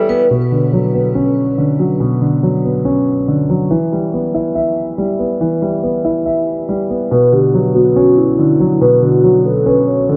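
A half-time feel in 4/4 gives this brooding, menacing hip hop fragment a slow, heavy sway, tuned slightly below standard pitch. A clear concert grand piano carries the accompaniment from start to finish, up front, with a worn, natural tone, deep bass and short sustain, softened by a low-pass filter. The vibraphone, played with soft mallets, sounds a brief opening note before the break that runs from 0.3 to 7.1 seconds, then returns with the melody at 7.1 seconds. Its mellow, ringing tone and slow motor vibrato sit in a boxy small-room character, shaded by a low-pass filter and a digital delay. A filter sweep runs from 0.3 seconds to the end over harmony that moves from Bmadd9 to Em and back, and a huge ambient reverb with a long tail wraps the whole fragment, which is cut from a longer piece.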